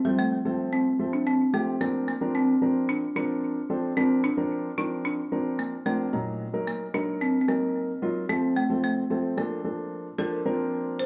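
Euphoric and upbeat, this short pop excerpt moves at 111 BPM in Bb major, with a folk marimba struck by hard mallets carrying the melody up front in a woody, bright, percussive voice, its plate reverb and analog delay adding sheen. A concert grand piano accompanies throughout, deep in the bass with short sustain and plate reverb, as the chords pass from F through Bbadd9 and a darker Ebm, then return to F and move to Bbmaj7 before settling back on Bbadd9. A wet small room and a cassette tape finish frame the whole piece.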